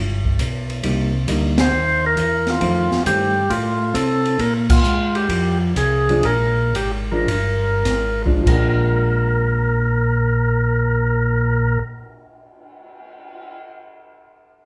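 A smooth, chorus-vibrato tonewheel organ bass line with key click and a slow rotary speaker opens this bluesy, swinging soul jazz organ trio excerpt in Bb mixolydian at 94-135 BPM, soon joined by an up-front acoustic drum kit with dark cymbals, a high-tuned snare and a boomy kick, a dark, picked hollow-body electric guitar comping from 0.8 seconds, and a full, percussive tonewheel organ melody from 1.6 seconds, with band accents punctuating the groove, a slowdown from 4.4 seconds, and the whole live-in-one-room performance set in a moderate large studio reverb.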